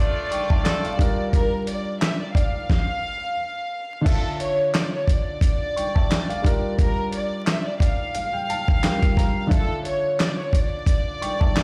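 Dark and tough, this boom-bap hip-hop excerpt moves with a lightly swung sixteenth-note feel over a four-beat metre. A close, soft-attacked violin section carries the melody, its pure, floating sul tasto bowing treated with digital delay and set up front. A mellow baby grand piano plays the accompaniment, intimate enough that its action noise is audible, while a clear, vintage horn section with light vibrato and octave doubling delivers tight stabs through delay, ending by 0.9 seconds. The gritty, compressed, sampler-style soul drum kit enters at 0.3 seconds and sits loudest in the mix, with a thumpy kick, medium-tuned snare, handclaps, hi-hat and crash, re-recorded in a small room. A stop arrives at 2.7 seconds before the section repeats, with the harmony alternating between Dmadd9 and Gm7. Vinyl crackle and a stone-room reverb give the whole a dusty feel, as if played on a big sound system in a bare space.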